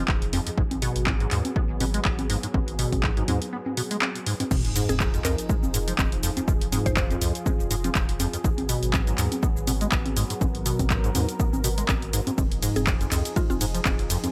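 A swung 122 BPM acid house groove in 4/4 drives this hypnotic, trippy clip, built on an up-front, tape-warm kick and a punchy analog drum machine of congas, handclaps, hi-hat, shaker, ride and crash, while a squelchy, resonant acid bass riff with filter sweeps and digital delay rides over a round sine sub bass. A detuned, warbling sawtooth pad holds sustained chords moving between Fm7 and Abm7, pumping with sidechain along with both basses in a digital ambience. After a short break, the drop lands at 4.5 s with a faint sub drop, and a woody FM mallet pluck sits in the background from 4.9 to 7.1 s and again near the end.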